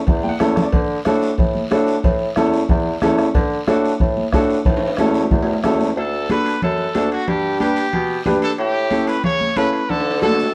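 A straight 4/4 cumbia groove at 183 BPM in D major drives this danceable, joyful latin excerpt, built on close, hard-handed congas, a soft-beater bombo that drops out at 5.8 seconds, ringing cowbell and timbales set in the background, and a raspy guiro. A mellow bassoon with vibrato carries the bass line from D2 to D3, and a woody, long-sustaining upright piano comps up front over A, D, G and A7 chords after an opening fill. At 6.0 seconds a brilliant, punchy trumpet with light vibrato and tape echo takes the melody, while drum fills punctuate the groove and the recording wears a warbling cassette-tape pitch drift inside a moderate studio reverb.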